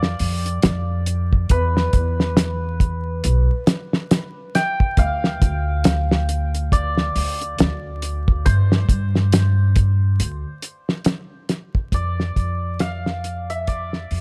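A hammered santur carries the melody in this smoky, dark trip hop excerpt, its shimmering, ringing tone trailed by tape echo as it moves between B4 and G5 in D dorian. Beneath it, an upright bass played pizzicato on gut strings sits up front with a woody, thumpy sound, holding the low end from B1 to G2. A cloth-damped drum kit keeps a slow 69 BPM in 4/4 with a 16th-note swing. Its dry sound, rolled-off top, tight kick and fat snare give it a thuddy, smooth character. The harmony shifts from Dm/F through E5, Dm and Gsus4 before returning to Dm/F, all within a small room ambience and a layer of vinyl crackle. All three parts play throughout the 14.2 seconds, and the music fades out from 9.6 seconds to the end.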